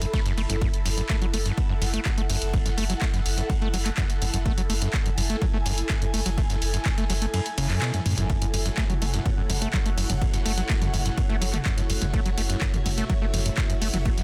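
A squelchy, distorted acid bass riff with a resonant filter sweep and delay drives this trippy, hypnotic acid house cut from a longer piece, set in F# minor at 125 BPM over a single F#m7 chord, with a punchy, tape-warm electronic kick up front and a round sine sub bass pumping beneath it. A tape-warm analog drum machine of handclaps, hi-hat and toms runs alongside a gritty, overdriven breakbeat kit of hi-hat, ride and snare set in the background, while an airy, breathy pad drifts through chorus and phaser. The kick drops out from 7.3 s, with a drum fill leading into a lush vintage string machine that enters at 8.3 s, all in a dense, dry, heavily limited mix.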